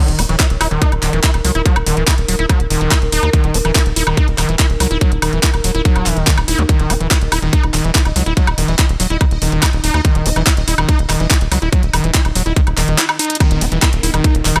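A straight 4/4 pulse drives this psychedelic trance excerpt, with a tight, overdriven electronic kick sitting up front alongside a layered, overdriven garage kit of handclaps, hi-hat and woodblock. Underneath, a punchy sequencer bass built from sawtooth and square waves gives a plucked, fast-attack, decaying, mellow push that keeps the groove driving. The star is a screaming acid riff, squelchy and aggressive, with a resonant filter sweep, distortion, chorus, tape echo and sidechain pumping that make it feel alien and restless. Behind it, a bright, detuned triangle texture holds sustained chords that pulse in time, softened by chorus and its own reverb, and pumping with sidechain compression. A drum fill at 13.2 seconds leads into a drop at 13.4 seconds, where a very quiet electronic downlifter and a faint, ethereal pad with ensemble chorus drift in. The overall sound is dry and loud.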